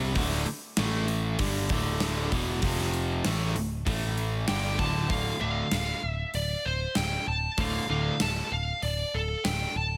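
A straight 4/4 pulse at 97 BPM drives this heavy, aggressive hard rock excerpt in D minor, with a gated 80s drum kit arriving at 0.2 seconds, its punchy kick and medium-tuned snare up front in a bright stone room, while a growly picked electric bass holds the low end. Two overdriven semi-hollow guitars play a riff together until 8.1 seconds, one with a hollow-body warmth and the other brighter, moving through power chords on D, A and F before settling on D minor. At 4.5 seconds a smooth overdriven lead guitar enters up front with a melody, the whole mix sitting in light reverb, carrying through to the close of this fragment cut from a longer piece.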